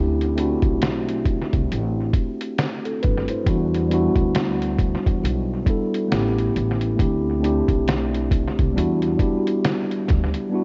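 A mellow, clean tine electric piano sits up front with cassette tape character and analog delay, carrying a reflective, nostalgic lo-fi hip hop passage cut from a longer piece, with chords moving through D7sus4, Em7 and A7 over a swung 4/4 groove. A woody, growly pizzicato upright bass holds down the low end, while a compressed, pitched-down sampler-style drum kit, also up front and touched with analog delay, adds a thumpy kick, a fat snare and muffled hi-hat from 0.2 seconds. The echo-heavy mix has light reverb, a tape-worn sheen and a softened top end.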